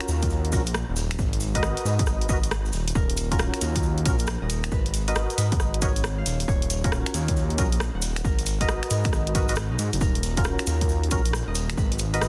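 A dry, dense and heavily limited mix carries this late-night, bouncy excerpt of two-step UK garage at 136 BPM in Eb minor, swung on the 16ths, where a deep, rumbling detuned saw bass sits up front beside a punchy, tape-warm electronic kick. A punchy analog drum machine supplies finger snaps, hi-hat and rim click with softly clipped snare, a grainy, bright and distant cabasa fills out the percussion, and a hollow, percussive organ stab with ensemble chorus and tape echo traces the alternating Ebm9 and Abm9 chords. From 3.0 seconds a bright, ringing fingerpicked Celtic harp joins in the background, its line also touched by tape echo.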